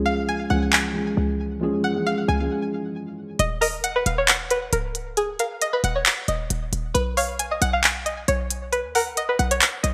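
Hip hop trap at 135 BPM in a half-time 4/4 feel, this short cut from a longer piece carries a menacing, eerie mood, moving from C# to D# minor to B. It opens with a break in which a felt-muted upright piano, soft, boxy and dark behind its low-pass filter, sits up front over a short, punchy 808-style bass with a sine body and a fast attack that decays quickly. A bright, twangy resonator pluck with chorus and delay rides high as a second line from 0.1 s, its sawtooth tone shaped by a filter sweep and a moving notch. The crisp, electronic trap kit arrives at 0.7 s with handclaps and hi-hats up front, and at 3.4 s the piano drops out as a nasal, string-like pluck takes the melody, chorused and low-pass filtered. A moderate plate reverb and bright 1980s-style digital production give the track a glossy sheen.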